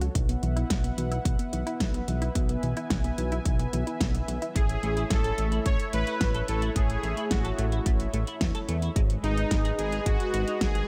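Synthwave with a nocturnal, driving mood, heard as a short cut from a longer piece in straight 4/4. A punchy electronic kick joins at 0.2 s beside a layered pop kit with a fat snare and metallic hats, overdriven and re-recorded in a small room, while a thick, detuned sawtooth bass with a fast attack sits up front. Beneath them, a smooth analog pad holds sustained chords with a slow attack, chorus and sidechain pumping, and a lush unison pluck plays arpeggios in the background, colored by cassette tape and tape echo. The pluck drops out at 4.5 s, and at 4.6 s an evolving, detuned supersaw takes the melody through cassette tape and delay, while a clean, fingered electric guitar adds a compressed riff in the background with ensemble chorus and tape echo. The harmony moves from Bsus4 to A to G#m, all set in light reverb and digital ambience.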